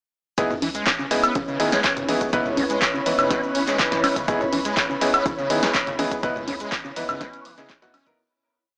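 A raw, trippy acid house piece that opens at 0.4 s on a squelchy, distorted acid bass line with accents and slides, brilliant syncopated grand piano stabs, a four-on-the-floor electronic kick and a punchy analog drum machine of snare, claps, hats, congas, cabasa, woodblock, ride and toms, soon joined by a round sine sub bass, a moody detuned analog pad, an ethereal pad with slowly shifting chords and a brief airy flute phrase at 1.7 s, in a dry, gritty mix with spring reverb that fades out from 5.6 s.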